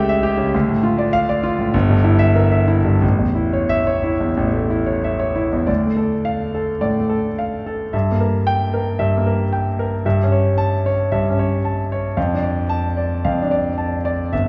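Heard from further back in a recital hall, the recording is bathed in wet reverb with a softened, rounded top end, though the clear concert grand still sits up front with a smooth, vintage tone and deep bass reaching down to G1. This bittersweet, passionate romantic character piece for solo piano moves in a rubato 4/4 somewhere between 88 and 117 BPM, with chords circling D minor through diminished and dominant harmonies. A new section begins at 5.7 seconds, and the 14.5-second excerpt is cut from a longer piece.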